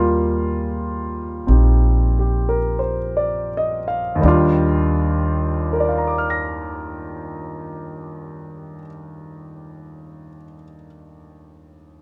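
Jazz ballad excerpt in Eb major, tender and intimate, moving at 40-52 BPM with a swung 4/4 feel that slows during the opening seconds, as a warm, up-front concert grand piano with deep bass accompanies over an Ebmaj9 chord alongside a woody pizzicato upright bass on steel strings that stops at 8.8 seconds, all captured by close, detailed microphones in a dry room.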